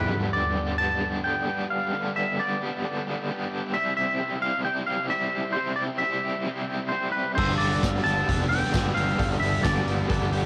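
Indie rock at 132 BPM in G major, this upbeat, jangly excerpt from a longer piece has the sound of a home cassette recording with little reverb. A twangy, clean electric guitar carries the melody from the start over an up-front, overdriven garage guitar riff treated with tremolo, while a very quiet tonewheel organ holds shouting, lightly overdriven chords with key click and a slow rotary sway. The harmony moves from G to C and back to G at 7.4 seconds, where the arrangement fills out: a punchy garage drum kit with a gritty, rolled-off top and a pumping stone-room sound kicks in alongside a growling, tube-saturated picked bass and a second background riff guitar drenched in lush chorus and tape echo. A faint, airy glockenspiel played with soft plastic mallets adds a ringing bell-like line on a single high note. A jingly tambourine sits in the background from 7.8 to 9.8 seconds.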